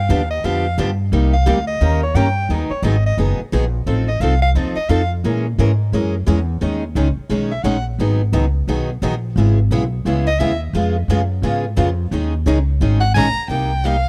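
A breathy soprano saxophone solos in subtone over a growly, thumpy upright bass, a bright steel-string guitar and a boxy archtop guitar in the background in this swinging, virtuosic gypsy-jazz excerpt in G# minor at 175 BPM, with a bowed violin entering with vibrato and portamento at 13.2 seconds, all in a dry, close 1970s-style studio sound.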